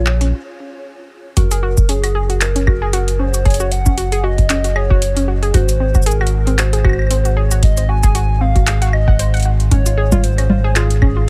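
IDM with a glitchy, playful swing, where a warbling, detuned square-and-saw lead with vibrato carries a nostalgic melody over lo-fi arpeggios from a dusty, 12-bit-gritty pluck that opens with a filter sweep during a brief break, while a rubbery, hollow square bass sits dark and up front and a tape-warm analog drum machine of metallic hi-hats, cabasa, claves, congas and handclaps is joined by a deep electronic kick at 1.4 seconds, all in a dry sound.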